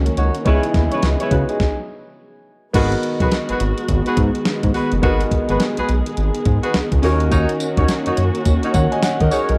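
Slick and punchy, this short new jack swing excerpt in G# minor moves at 105 BPM in 4/4, with 16th notes swung at 61%. An up-front, sampler-style 8-bit drum machine sets the groove with a thumpy kick, fat snare, hi-hat, tambourine and crash, its tape-tinged punch carrying the air of a large room. Beneath it, a smooth, up-front synth bass blends sawtooth and square-wave tones, detuned and sustained with a fast attack and vibrato. A clear, open baby grand piano and a dark, woody, lush string section fill out the chords, while a mellow, jazz-style horn section enters at 0.2 seconds with octave-doubled stabs that carry a slapback echo. After a C#m7 opening, the music hits a stop from 1.6 to 2.7 seconds, then settles onto G#m7 and later D#m7, all wrapped in light digital reverb and a dark, warm production.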